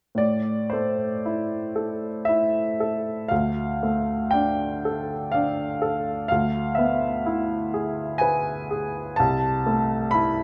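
A clear, woody upright piano, slightly detuned and placed up front, carries this brief romantic nocturne on its own, sounding from 0.1 to 10.4 seconds across a span from C2 to B5. The mood is yearning and wistful, set in A minor and in 3/4 at a slow 57-63 BPM, with a rubato feel that lets the time breathe. The harmony moves from A minor to D minor, then to E7 over D, and settles on A minor over C near 9.2 seconds. The instrument's long sustain blends with a moderate recital hall reverb, while close, detailed microphones keep the tone intimate and present. Cut from a longer piece, the passage feels like a single searching phrase from a larger classical work.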